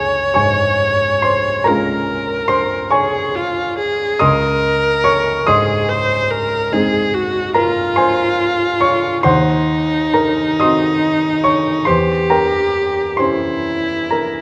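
In a slow, rubato 12/8 around 40-49 BPM, counted in dotted quarters, this solemn, elegiac romantic duo for viola and grand piano, tuned to A4 = 442 Hz, plays throughout a 14.4-second excerpt cut from a longer piece. The bowed viola carries the melody with a rich, smooth, even tone and vibrato, sitting up front. The intimate, vintage-sounding piano accompanies with a short sustain and audible action noise. Both sit in a moderate recital hall reverb as the harmony moves from Db through Ab/Db and Cdim/Eb to Edim7.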